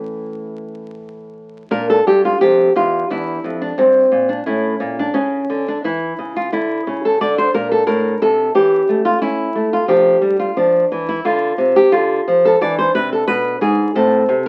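Freely rubato over a 4/4 pulse, this introspective, flowing baroque-style dance in the classical tradition is carried by a solo nylon-string guitar, fingerpicked and placed up front with a small, intimate body and audible finger squeaks. After a short opening phrase, the harmony drifts through Em7b5 at 1.7 seconds, passes Dm and E7, and settles on Am at 14.0 seconds. A wet studio reverb and the crackle of a very old 78 rpm record give this excerpt a worn, bygone character.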